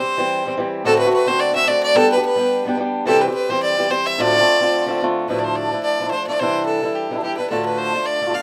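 A moderate small-room reverb surrounds this spirited, lively Celtic reel, cut from a longer piece and played at 217 BPM in D dorian with lightly swung eighths. Up front, a single clear, biting fiddle carries the melody with light vibrato and an airy, intense bow, while a dark, boxy, fingerpicked swing-style acoustic guitar supplies the accompaniment. Both parts play throughout, and at 5.3 seconds the tune moves into a second section, with the harmony settling onto D minor.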